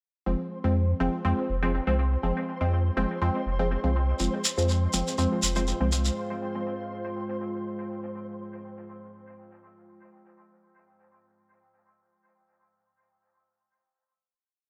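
Dub techno at 122 BPM in F minor, cavernous and hypnotic, built on a single F minor groove with a light swing on the sixteenths and a light reverb. Up front, a clean, smooth sine sub bass plays a dotted rhythm with tube saturation, while muted, detuned chord stabs move one shape in parallel through a filter sweep, chorus, phaser and dub echo, and a flickering granular texture holds a high C5 in the background from 0.5 s. A hand-played shekere adds compressed sixteenths from 4.2 s, and a moody, slow-attack ambient pad with chorus and its own reverb sustains chords from 4.9 s to the close at 8.1 s.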